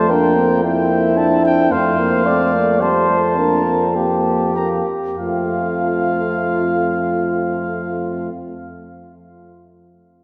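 In a rubato 3/4 that drifts between 94 and 112 BPM and slows from 0.9 to 5.2 seconds, this noble, warm classical brass quintet piece in F major unfolds as a brief fragment of a longer work, its harmony settling on F at 1.7 and again at 5.2 seconds. A clear, soft-edged trumpet carries the high melody while an up-front flugelhorn with a mellow tone and light vibrato sings the second line. Beneath them, a background trombone with vibrato and a French horn with a smooth top supply accompaniment, and a distant, roomy bass trombone holds a low F, all bathed in a lush church reverb.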